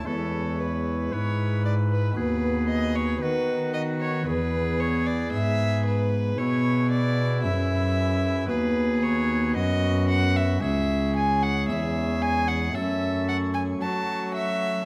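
Flowing and radiant, this baroque-style sonata movement in 4/4 unfolds at a stately 57 BPM, its harmony passing from E through B/D# to C#m and F#m. A rich, period-style gut-string violin with light vibrato carries the melody up front, a clear, smooth-topped oboe sings a softer second line alongside it, and a reedy cello anchors the bass while a chamber organ adds bright, light flute stops with a touch of chiff. All four parts play throughout this fragment of a longer piece, set in a moderate recital hall reverb of 1.5 seconds.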